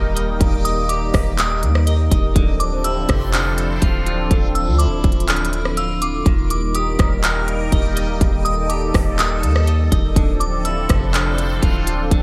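A half-time hip hop groove arrives at 0.2 s on an industrial drum kit, with a heavy kick, crisp hats, handclaps and rim clicks soaked in gated reverb, while a soft, round 808-style bass sits up front beneath it. A sawtooth pad with a resonant filter swell pumps against the beat under alternating Ebmaj7 and Dm9 chords, as a glassy FM synth bell carries the high melody through chorus and digital delay. A clean picked electric guitar adds phased arpeggios, and a reversed, granular texture drifts dreamily in the background, giving this fragment of melancholic, hazy cloud-rap a bright 1980s-style digital sheen.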